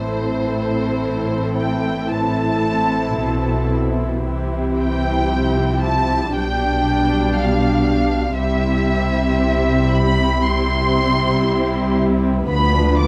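A muted violin section carries a yearning, melancholic melody up front in this slow, rubato excerpt from a romantic string orchestra movement at 55-60 BPM, with a second violin line, lightly vibrato violas, background cellos and close double basses, all con sordino and veiled, moving from A minor through C and G/B in a moderate recital hall reverb.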